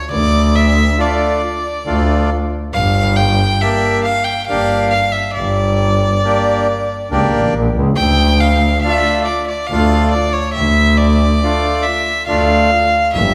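A bright, nasal solo violin opens this festive yet bittersweet klezmer excerpt, carrying the melody with light vibrato and an airy, earthy bowed tone, while a clear, focused bowed double bass with its own vibrato joins almost at once, both sitting up front. From 1.0 seconds a reedy, full accordion with dry tuning adds close, dry accompaniment as the straight 3/4 feel at 69 BPM gradually speeds up over a minor progression moving from Dm to Gm and back to Dm at 8.0 seconds. The players ring out in a reverberant recital hall, cut from a longer piece.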